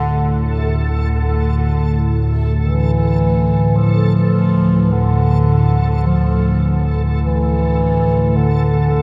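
A dreamy mix soaked in a huge ambient reverb opens onto a vast, ominous space, each sound lingering long after it is played. This dark ambient drone fragment drifts in free time, resting on a single Dmadd9 chord for its full 9.0 seconds. Up front, an evolving analog drone sits low between D2 and A2, its wave-folded, vintage tone warbling through chorus with slow attacks and long releases. A solo bass clarinet, warm and classical in style, carries the melody between D3 and F3, its notes trailing delay echoes. Further back, a reversed, granular texture swells on A4 with its own reverb and analog chorus, while an eerie, inharmonic FM bell plays arpeggios so faint they are barely audible.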